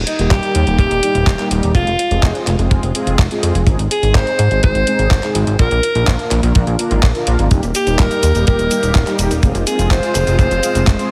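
Italo disco at 125 BPM in Eb major, this romantic, danceable excerpt pairs a glossy, up-front chorused synth bass and a tight, dry kick with a tape-warm 8-bit drum machine of cabasa, handclaps and hi-hat, while mellow synth brass stabs with chorus and vibrato support a breathy, edgy alto saxophone lead with scooped notes and delay, and a swirling phased string machine joins in the background at 7.5 seconds, all under a heavily compressed radio sound.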